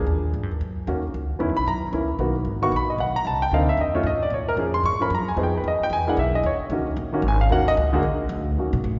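Small-group swing and bop jazz in Eb minor at 226 BPM, moody and swinging, with a worn, present baby grand piano comping through chords like Ebm7, Bmaj7, F7alt and E7#11 over a woody, plucked upright bass on steel strings, both up front and bathed in the long, wet reverb of a church or concert hall with dulled highs, in a roughly 9-second clip cut from a longer piece.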